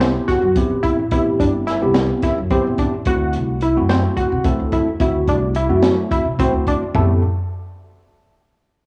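Set in a straight, uneven 7/8, this brooding, intricate progressive instrumental is a short cut from a longer piece. A crunchy breakbeat kit sits up front with a punchy kick, a high-tuned snare, hi-hat and toms, its saturated, gritty sound softened by a rolled-off top and the dark feel of a small room. A woody, bright pizzicato upright bass holds the low end under the kit. A tight sawtooth synth drives arpeggios with a detuned, filter-plucked edge and a chorus shimmer, sitting prominently beside a worn, slightly out-of-tune tine electric piano that colours its clean, direct chords with phaser. The harmony moves from Am9 to D9 at 3.1 seconds and returns to Am9 at 7.0 seconds, while cassette tape and light reverb give the drums, synth and electric piano the hazy intimacy of a home recording.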